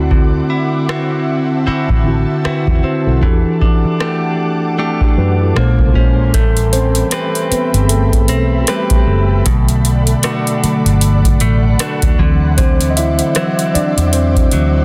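A dense, heavily limited mix with light digital ambience frames this late-night, longing contemporary R&B excerpt at 77 BPM in A dorian, where a booming analog drum machine with a deep kick and metallic hats sits up front, joined by a round, foam-muted fingered bass, clean, compressed guitar arpeggios with digital delay, an ethereal, warbling pad with ensemble chorus and sidechain pumping, and a mellow tine electric piano that takes a solo from 6.3 seconds over chords moving from Am9 through Bm7 to D9.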